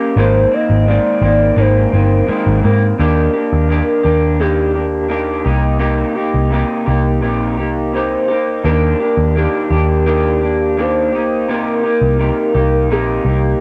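A hollow, woody clarinet-like synth lead with soft vibrato and subtle chorus carries the melody over a dark, slightly broken-up electric guitar, drenched in lush chorus and warbly pitch drift, that opens at 0.0 seconds, while a round, foam-muted vintage bass sits up front beneath them in this laid-back, sunny slice of bedroom-style indie pop, drifting from Abadd9 into alternating Ebmaj7 and Cm7 chords with a dry, lo-fi cassette home-recording sound.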